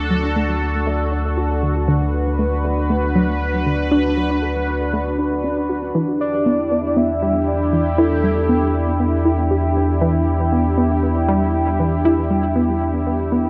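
Cosmic and mysterious, this short cut from a longer piece of ambient, sequencer-driven space music moves in a straight 4/4, shifting from a D chord to Em7 at 5.9 seconds. A bright, up-front resonant pad holds sustained chords throughout, its detuned layers evolving through a filter swell with a long release and chorus. Underneath, an analog pluck plays a riff with a fast attack and short decay, its round, noise-edged tone carried by chorus and tape echo while a filter sweep runs across it for the full length. A deep, sine-based sub bass sits up front, sustaining low notes beneath the chords. From 6.2 to 9.0 seconds a soft, octave-layered lead with a dark, full tone enters with a brief melody, touched by vibrato, chorus and tape echo. A moderate plate reverb surrounds the mix, and the worn cassette tape sound adds a warbly pitch drift.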